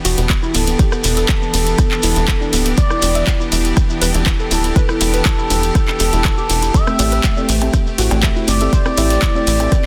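Dense and heavily limited, with a light reverb, this excerpt of emotional, dreamy progressive house moves at 121 BPM in 4/4 with a straight feel, centred in E minor and tuned slightly flat to A4 = 439 Hz. A punchy, up-front electronic kick and a tight, driving sawtooth sequencer bass anchor the groove, the bass pumping under sidechain along with the distant, earthy chamber strings that hold sustained chords with light vibrato. A soft, round pluck spins arpeggios through lush chorus and tape echo, while an expressive synth lead carries the melody from 0.5 seconds, smooth and dark with vibrato, chorus, tape echo and a touch of vintage 12-bit sampler grit. A house kit with metallic hats, handclaps, ride and rim clicks sits alongside a grainy, mellow shekere in the background. As the harmony shifts from Em7 to Am7 at 6.7 seconds, tape-toned congas, bongos and cowbell join at 6.9 seconds and a deep, mellow chord stab arrives at 7.0 seconds, soft and detuned in the background.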